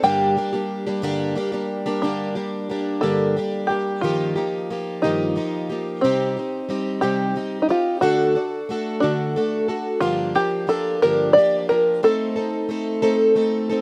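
A slow, straight six-eight pulse carries this haunting, wistful folk fragment, cut from a longer piece. An open-back banjo carries the melody from the opening second, its fingerpicked line mellow yet plunky, with a percussive twang. Beneath it, a picked, plugged-in twelve-string acoustic guitar sets up the accompaniment in a bright, boxy archtop tone, its octave-doubled strings shimmering and sitting up front in the mix. A finger squeak on the guitar adds a close, human detail. The recording was made outdoors and is dry, with little reverb, so both instruments sound intimate and unadorned until the fragment breaks off at 13.8 seconds.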